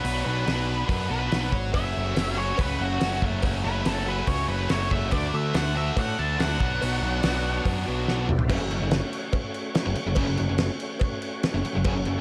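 A straight 4/4 groove at 142 BPM drives this swaggering, gritty classic rock passage in F# minor, built on a cloth-damped, thuddy drum kit with a fat snare and dark cymbals, a growling picked bass with overdrive up front, and a tight, bright distorted guitar riff. An octave-fuzz lead guitar solo carries the melody until 7.6 seconds over a very quiet tonewheel organ holding sustained chords through a slow rotary speaker, while a dry, metallic cowbell sits in the background from 1.7 seconds. After a drum fill, a crunchy, double-tracked overdriven guitar riff joins in the background at 8.5 seconds as the chords move from B minor through F# minor, D and B minor to F# minor.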